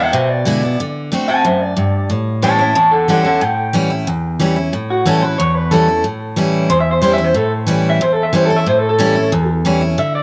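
Rock with a retro, rollicking mood, this short cut from a longer piece pairs two guitars sitting up front in a lightly reverberant sound that tops out at 10.7 kHz. An electric guitar played through a small old amp carries the melody in a twangy, slightly broken-up tone, coloured by spring reverb and tape echo. Beneath it, a picked steel-string dreadnought acoustic with fresh strings supplies full-bodied accompaniment that reaches into its low register. The chords move from E7 to D7 and settle on A7. At 4.7 seconds the music shifts into a new section, where the electric guitar takes a clean solo that runs to the end at 10.2 seconds.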